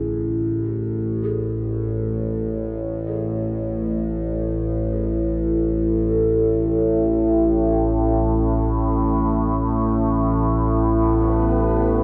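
In free time, this cavernous, dark ambient drone fragment rests on an up-front, resonant, ring-modulated drone of moving overtones that sustains throughout, while very quiet bronze gamelan-type bossed gongs trace metallic, beating arpeggios until 6.8 seconds, and a bright, detuned bubbling texture with random filter steps surfaces at 10.9 seconds, all set in a dreamy mix soaked in plate reverb over an A minor opening.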